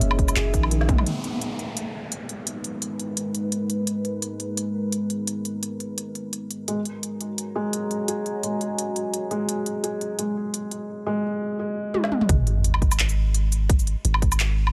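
Half-time drum and bass with a spacious, heavy mood, cut from a longer piece in a light reverb. It opens on a drop, where an overdriven, tight electronic kick and a deep, sine-toned 808-style bass sit up front beside a woody-snared, tape-warm drum kit with smooth hats, handclaps, shaker, toms and woodblock. At 1.1 seconds the kick and bass fall away, leaving the drums under a moody, warbling pad of detuned sawtooth unison with a sub octave, chorus and its own reverb, pumped by sidechain. A felt-muted upright piano returns at 6.7 seconds with soft, intimate arpeggios through a delay, as the harmony moves between G#m and F#add9. A drum fill leads into the second drop at 12.3 seconds, where an impact with a sub drop brings back the kick and the long, mellow bass.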